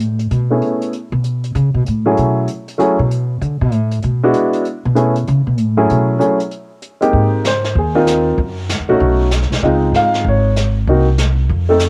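A woody, growly upright bass, plucked and up front, takes a solo through the first 7.1 seconds of this relaxed, swinging jazz piano trio excerpt, with the brushed drum kit and its punchy kick keeping time. A natural-sounding baby grand piano carries the melody from 0.5 seconds, and it and the drums have a cassette-tape colour. The harmony shifts into a new section at 7.1 seconds, moving through chords such as Ab69 and Dbmaj7, all heard in a small room with light reverb on a home cassette recording.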